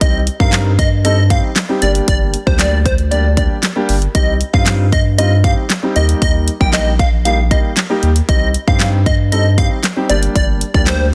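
Dance-pop at 116 BPM in C minor, energetic and confident, this 11-second cut sets a bright, detuned square-wave unison lead with a filter sweep and vibrato over a warm concert grand piano and a thick, saturated sub bass, both pumping with sidechain, while an up-front electronic kit drives with a punchy kick, fat snare, hi-hat and handclaps through a dense, heavily limited modern master.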